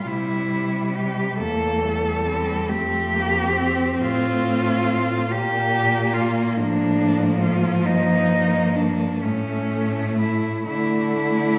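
A solemn, melancholic passage for cello ensemble, cut from a longer classical piece, opens with four bowed cellos sounding together from the very start. Up front, a clear, focused solo cello carries the lyrical melody with vibrato. Close behind it, but set in the background, a second cello with a rich tone traces a lower inner line. A third cello fills in the accompaniment, and a fourth, heard from farther away, supplies the bass. The music moves in an unhurried, rubato 12/8, with the harmony passing from C7 through F, Bb and Eb/G to A before arriving on D5 near 10.7 seconds. A wet recital-hall reverb gives the ensemble a spacious, church-like resonance.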